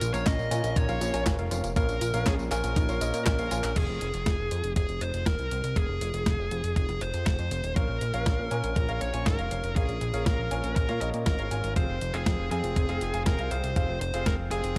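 Lightly reverberant and nostalgic, this bittersweet italo disco cut in F minor moves at 120 BPM, with a thumpy electronic kick and a clean 12-bit drum machine of snare, handclaps, hi-hat, tambourine and crash, both re-recorded in a small room, under a fat, detuned sawtooth analog bass with a filter sweep. Up front, a dark, overdriven electric lead guitar carries the melody through tape echo, while a lush unison pluck plays arpeggios in the background until 3.7 seconds. A brilliant baby grand piano adds stabs with vintage sampler grit, dropping out at 3.7 seconds during a drum fill and returning at 7.8 seconds as the chords shift between Bbm and Fm.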